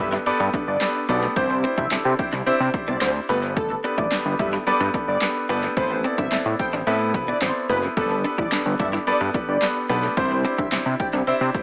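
A clear, polished baby grand piano sits up front in this euphoric, upbeat dance-pop excerpt, its chords pumping through sidechain compression and trailing analog delay. Beside it, a fat, detuned sawtooth bass with a filter sweep also pumps in the foreground. A bold unison lead carries the melody, mixing sawtooth and triangle tones with a sub octave, a moving notch, vibrato and its own delay and pumping. A clean, picked electric guitar, recorded direct and compressed, plays a riff in the background from 0.1 seconds through ensemble chorus and delay. A tape-warm analog drum machine joins at 0.3 seconds with a punchy kick and snare, handclaps and hi-hat in a short room. The harmony moves through Gadd9, Cadd9 and Amadd9 in a straight 4/4 feel, set in a moderate spring reverb with an echo-heavy mix and a small-speaker sound.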